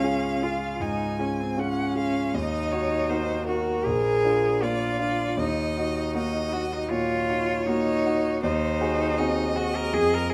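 A moderate large-studio reverb, with a decay of about 0.9 seconds, frames this brief classical excerpt. It comes from a slow romantic movement for piano trio in 4/4 at 79 BPM, played with rubato and tuned to A4 = 439 Hz, and its mood is serene and lyrical. The violin carries the melody with a clear, focused tone and vibrato. The cello sits up front with a rich, intense second line touched by light vibrato. The concert grand piano supplies the accompaniment from a deep bass upward, its smooth, vintage character, long sustain and audible action noise heard up close. All three play throughout the 10.3 seconds as the harmony moves from Db through Ebm and Bb7 to Ab7 over Eb.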